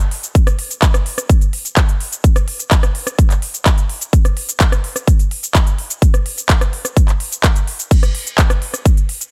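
A straight pulse in 4/4 drives this short EDM excerpt, built entirely from drums and carrying a euphoric, triumphant energy. The big-room dance drum kit runs from the opening at 0.0 seconds, layering crash cymbal, handclaps, crisp hi-hats, rim clicks and shaker into a polished, tape-tinged groove that sits up front. An electronic kick drum joins at 0.3 seconds and stays until 8.9 seconds, its punchy, layered thump standing out as the loudest element in the mix. Both parts have a heavily produced, electronic character, and the whole passage is framed in a digital ambience that gives the drums a sense of space. It feels like a slice of a larger track, capturing the celebratory rhythmic backbone of a peak-time dance anthem.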